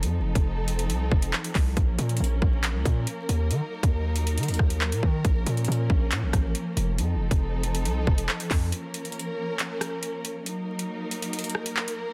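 Drill hip hop at 138 BPM in a half-time 4/4 feel, this cold, ominous excerpt in Bb harmonic minor sets lush, bowed symphonic strings with vibrato holding sustained chords from F7 through Bbm and Ebm against an up-front electronic drill kit of hard-clipped kick, metallic hi-hats, handclaps and rim clicks, while a punchy, heavy sine 808 bass with a noise layer hits hard until it drops out at 8.7 s for a break, all in a dense, heavily limited, dry mix dusted with vinyl crackle.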